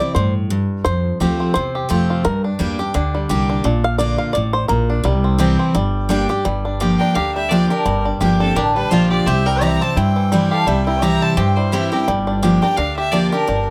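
Bluegrass with a driving yet haunting mood, this fragment of a longer piece moves with a light swing in 4/4. A twangy, percussive five-string banjo played with fingerpicks carries the melody up front and takes a solo through the opening 6.5 seconds, backed by a bright, full-bodied picked dreadnought guitar and a woody, thumpy upright bass on gut strings that enters at 0.2 seconds. At 7.0 seconds a clear, focused fiddle with light vibrato joins on melody, while a metallic, nasal lap resonator guitar played with slide and fingerpicks adds a second line beneath it. The harmony moves through C, F, Gm and Bb before settling on Gm7 and C in the second half, giving the tune its shadowy, minor-leaning color. Close, detailed microphones and light reverb keep each acoustic instrument distinct and present.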